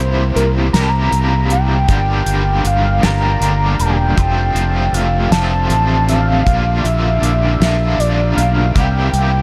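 A slow, straight 6/8 lilt drives this dark, mysterious psychedelic rock fragment, cut from a longer piece, with a dry, damped 70s drum kit of hi-hat, fat snare and tight kick entering at 0.4 seconds. Up front, a round fingered electric bass anchors the low end, while an overdriven, double-tracked electric guitar plays a bright picked riff colored by tremolo and tape echo. Above them, a fat analog lead carries the melody with a detuned sawtooth edge, sub octave, ring modulation and vibrato, its sustained notes thickened by chorus and tape echo. From 1.9 seconds, a gritty tonewheel organ with key click and slow rotary speaker holds chords in the background. The chords move from C7 through Gm7, F6 and Bb6 and back to C7, and the echo-heavy mix keeps the room close and unreverberant.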